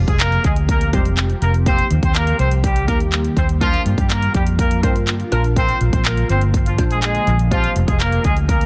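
Dance-pop in F dorian at 123 BPM, driving and bittersweet, in which a clear horn section with light vibrato carries the melody over a punchy, up-front electronic drum kit with handclaps, hi-hat and kick, a dark, round, foam-muted fingered electric bass, a glassy wavetable pluck and an ethereal, mellow pad with slow attack and ensemble chorus, with a very quiet, close and dry group handclap, all in an echo-heavy mix with light reverb, where sidechain pumping breathes through the bass, pluck, pad and horns and dub echo trails the pluck, horns and drums across chords moving from Fmadd9 through Eb, Gm7 and Bb back to Fmadd9 in this short excerpt.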